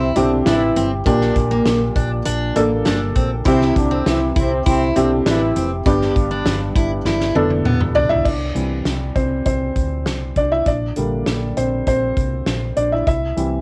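A straight 4/4 groove at 100 BPM drives this hopeful, piano-driven pop excerpt in C major, built on a natural country drum kit with a fat snare and punchy kick up front, a dark, round hollow-body electric bass, and a felt-muted upright piano whose boxy, intimate tone carries audible action noise. A full-bodied jumbo steel-string acoustic guitar plays a picked riff until 8.1 seconds, while a mellow French horn section with a soft, vintage attack adds a second line that drops out at 5.7 seconds. After a drum fill, the felt piano takes a solo from 8.3 seconds, all framed by light reverb and the homespun character of a cassette recording.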